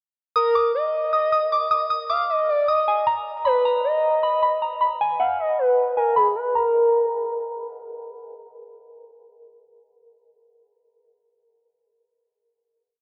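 Hip hop trap at 155 BPM in a half-time feel, eerie and dark in Eb harmonic minor: a soft, pure FM synth bell loops a mellow melody with chorus and phaser, while a smooth, detuned gliding portamento lead adds a sparse counter-melody with vibrato, chorus and tape echo, both playing from 0.4 to 7.7 seconds through a filter-swept breakdown before a final note arrives at 6.6 seconds, all under a low-pass filter in a huge ambient reverb.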